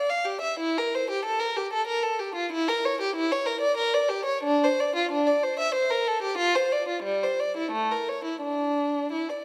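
A single bowed violin sits up front, playing alone for the full 9.4 seconds with a warm tone, expressive vibrato and portamento between notes. This short passage, cut from a longer piece, is a baroque-style suite movement for unaccompanied violin in 3/4, moving at roughly 84-97 BPM with a flexible, rubato feel. The mood is introspective and solemn. The line ranges from G3 up to F5, and its upper notes stay smooth rather than sharp. A generous recital-hall reverb, with a decay of about 1.6 seconds, surrounds the instrument and lets each phrase linger in the room.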